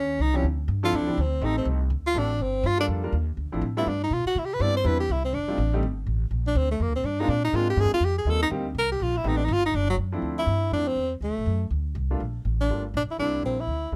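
Swinging and smoky, this brief excerpt of small-group jazz in the swing and bop tradition moves at a brisk 245 BPM in 4/4, with a moderate swing on the eighth notes. A breathy, clear tenor saxophone carries the melody up front, soloing from the start until 10.2 seconds, when the music shifts from G minor to D minor. Beneath it, a woody upright bass with steel strings is plucked throughout, sitting forward and warm in tone. A warm grand piano enters at 0.3 seconds with intimate accompaniment, its natural sound carrying audible action noise. The harmony moves through minor sevenths, half-diminished chords and dominant sevenths, with stops on Cmaj7, Bb6 and Eb6 along the way. Close, detailed microphones and a light reverb keep the small group sounding near and vivid.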